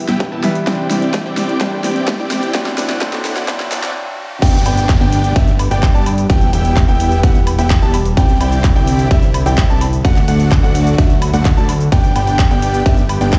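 Euphoric and triumphant, this festival progressive house excerpt in G major runs at 128 BPM in a straight 4/4. It opens with a build-up in which a clear grand piano with audible action noise and a lush, chorused and phased pad sit in the background, a very quiet riser and downlifter hover, and a dense, detuned supersaw riff rides a filter sweep under an overdriven drum fill, before a brief stop at 4.0 seconds. At 4.4 seconds the drop lands, driven by the punchy, overdriven electronic kick up front and the big-room kit with its huge snare, both present from the opening moments. A fat, nasal analog bass now pumps beneath, and a warm grand piano plays high arpeggios over the Em, Cadd9, D and G progression, all set in a large studio reverb.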